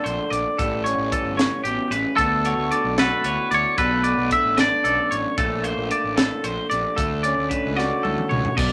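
Math rock and midwest emo in a straight 6/8, this wistful yet bright passage is cut from a longer piece. A lo-fi electric guitar through a small old amp, slightly broken-up, carries the chords while a clean, twangy second guitar picks high arpeggios above it. A fuzz-laden fingered bass sits low and overdriven beneath a polished acoustic kit with a punchy kick, a high-tuned snare and dark cymbals, placed up front in an airy studio room. From 2.2 to 5.2 s a third guitar, scooped and compressed, steps forward with the melody as the loudest voice in the mix. The harmony drifts through colours such as Bbmaj7, D6 and Bm7, and a drum fill at 7.8 s rounds off the passage inside a moderate small-room reverb.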